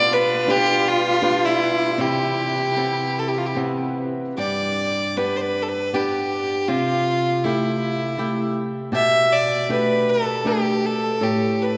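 A tender, nostalgic Celtic slow air opens with everything sounding together: a biting, earthy solo fiddle carries the melody up front while a fingerpicked acoustic flamenco guitar, bright and equally forward, supplies the accompaniment. Beneath them, a second, darker fiddle adds a woody, lightly vibrato-tinged line in the background, and a pipe organ holds soft sustained chords on its flute stops, with a tremulant and a baroque voicing. The pace is a rubato 79 BPM in 3/4, in G mixolydian, with the harmony drifting gently from G/B through Cmaj7, G and C6 to Gadd9/B. The second fiddle falls away at 4.0 seconds and the organ at 4.3 seconds, leaving the lead fiddle and guitar to restate the phrase as a duo. The whole band was captured live in one room, bathed in a long, wet church reverb that lends the fragment a spacious air.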